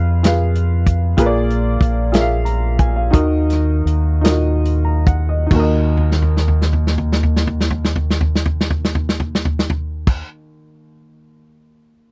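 A woody, natural upright piano and a round, punchy fingered electric bass run through an envelope filter open this solemn, soulful slow gospel piece in Eb minor and 6/8 at 44-64 BPM (dotted quarters), tuned to A4 = 436 Hz and moving over Fdim, Bb7 and Ebm. An acoustic soul drum kit with dark cymbals, a medium-tuned snare and a tight kick joins them up front, the tempo slows from 1.2 s, and a drum fill runs from 6.0 to 10.1 s, with the whole recording carrying a dry, close 1970s-style studio sound.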